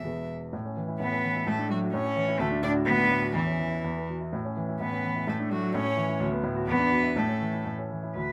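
A cheerful, spirited classical-period movement for piano trio opens with all three players together: a rich, floating violin carries the melody with a soft, pure sul tasto bow. Beneath it, an up-front cello with a smooth top sings a second line while a polished, present grand piano supplies the accompaniment. The playing is loose with rubato in a quick two-beat metre within a moderate small room, and the violin drops out at 7.7 seconds, just before this brief cut from a longer piece ends.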